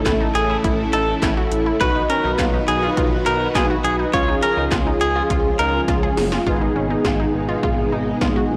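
A nostalgic, bright synth-pop excerpt at 103 BPM opens with mellow, brassy synth brass accompaniment, a vintage string machine of violas and a lush unison pluck arpeggio with slapback echo, joined by a smooth gliding synth bass and punchy 80s electronic drums with gated snare, metallic hats and handclaps, while an up-front, twangy clean electric guitar plays a second line from 0.4 to 5.8 seconds before a drum fill leads to an A-flat minor chord at 6.5 seconds, all bathed in plate reverb on a blown-out, overdriven recording.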